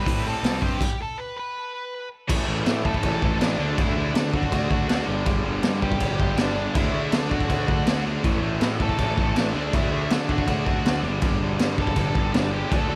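Punk rock at 161 BPM in a straight 4/4, upbeat and rebellious, cut from a longer piece: a dark, smooth overdriven lead guitar with tape echo carries the melody over two bright picked rhythm guitars, one overdriven and one distorted, sitting in the background, a growly fuzz-laden picked electric bass, and a raw garage drum kit up front with a boomy kick, gritty saturated tone and rolled-off top, all hitting a stop from 0.8 to 2.3 seconds before a very quiet double-tracked overdriven guitar joins the riff at 2.3 seconds as the chords cycle through power-chord shapes on A5, D and G5 in a dry mix with little reverb.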